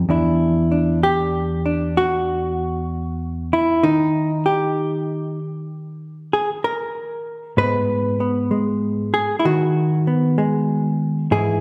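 Solo jazz at a slow 64 BPM in 4/4, swung on the eighth notes, with a moody, late-night air. A single hollow-body electric jazz guitar carries the whole excerpt from 0.0 to 11.6 s, ranging from E2 up to B4. Its tone is dark, clean and fingered, compressed and placed up front. The harmony opens on Em7, moves into a chordless stretch at 3.8 s, then settles into G# minor on G#m7 at 7.6 s as a new section begins. The guitar sits in a wet, reverberant space like a church or concert hall, with a two-second tail, and this short passage is cut from a longer performance.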